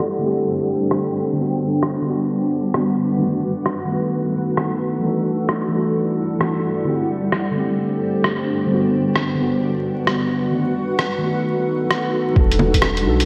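Muted, intimate felt-like synth keys with chorus and tape echo open this rainy, nocturnal future garage excerpt in E minor at 131 BPM alongside a cloudy, evolving granular pad, both pumping under sidechain through a filter sweep, before up-front, muffled, overdriven sampler-style bongos, hi-hat and rim click arrive at 0.9 s with a swung 16th feel, and a deep, round 808-style bass and a thumpy kick join at 12.4 s, all set in a dreamy hall-soaked mix with vinyl crackle.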